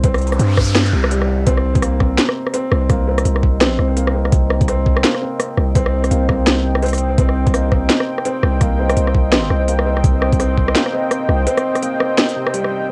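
Half-time drum and bass at 168 BPM with a 16th-note swing, this cinematic, spacious cut in C minor opens straight into a drop over a single C minor chord, driven by a knocking electronic kick and an up-front kit of cracking snare, crisp hats and rim clicks, both tape-warm from cassette. A deep, long 808-style sine bass with tube saturation sits up front beneath a soft, felt-muted upright piano whose intimate arpeggios carry audible action noise, 12-bit sampler grit, a low-pass filter and tape echo, while a brief electronic noise sweep flickers from 0.2 to 1.5 seconds. From 2.6 seconds a moody sawtooth-and-sine pad with detuned unison, a sub octave, chorus, reverb and sidechain pumping fills out the dry home-cassette sound.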